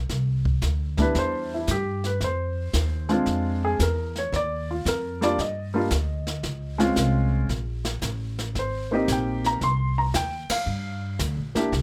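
A light reverb gives this short cut from a longer jazz piano trio performance an intimate, studio-room sound, with the piano and upright bass placed up front. The mood is relaxed and warm, moving at 114 BPM in 4/4 with a swung eighth-note feel. The pizzicato upright bass opens at 0.0 seconds with a woody tone on steel strings, and the brushed drum kit follows almost at once, its dark cymbals, medium-tuned snare, boomy kick, hi-hat and ride giving an acoustic pulse. The baby grand piano takes the melody from 1.0 seconds, with its action noise audible close up, and moves over harmony that shifts from Cmaj7 through F7(no3), E7b9b13, Ebmaj7 and Dbmaj9, passes a brief stretch where the chords drop away, and settles on Abmaj7 and Gm7. The whole trio hits a shared accent at 10.4 seconds just before the clip ends.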